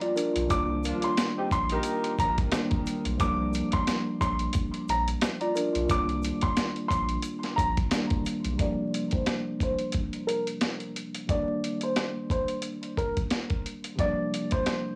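A blown-out, overdriven boom-bap hip-hop excerpt with vinyl crackle and light reverb, reflective and dark in C minor at 89 BPM with a swung 16th feel, where a gritty, thumpy sampler-style drum kit with a high-tuned snare and a worn, slightly out-of-tune tine electric piano sit up front, a deep, round sub bass and a very quiet grainy egg shaker drop out at about 8.6 seconds, a woody upright piano carries the tape-echoed melody, a mellow jazz-style horn section with vibrato adds brief stabs between 0.8 and 2.2 seconds, and a filter sweep runs from 8.6 seconds to the end over chords moving between Gm7 and Cm7.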